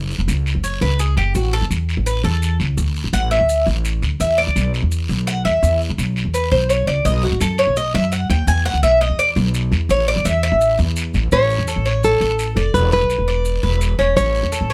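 Relaxed and sunny, this Cuban son and guajira excerpt opens with the metallic, double-strung Cuban tres soloing in picked arpeggios up front over a thumpy, woody pizzicato upright bass, raspy dry guiro and grainy maracas in the background, until a fingerpicked classical nylon-string guitar melody joins at 11.3 seconds, the whole captured with close, detailed microphones and light reverb.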